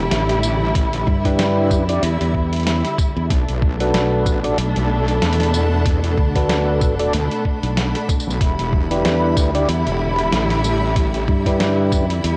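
A dark symphonic string section, a heavy wobble bass and a blurred granular cloud pad open this glitch hop excerpt together, setting a playful, swaggering tone at 94 BPM in E minor with a lightly swung 16th-note feel. The lush, bowed strings hold sustained chords with expressive vibrato and pump under sidechain, while the sawtooth-and-sine wobble bass sits up front, overdriven and thickened with chorus, until it drops out at 11.3 s. A sampler-style boom bap kit brings a gritty, pitched-down snare, hi-hat and tambourine, joined at 0.8 s by a thumpy, compressed electronic kick, both colored by small room ambience and cassette tape. Shortly after, a bright, growly fingered electric bass with tube saturation and a round, mellow tonewheel organ playing stabs arrive, the organ dressed in overdrive, chorus vibrato, a slow rotary speaker, analog delay and sidechain pumping. The evolving cloud pad stays in the background throughout with its own built-in reverb, while the harmony moves from Em7 to Bm7 and back to Em7. 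The whole has the hazy, lo-fi character of a home cassette recording with light digital reverb.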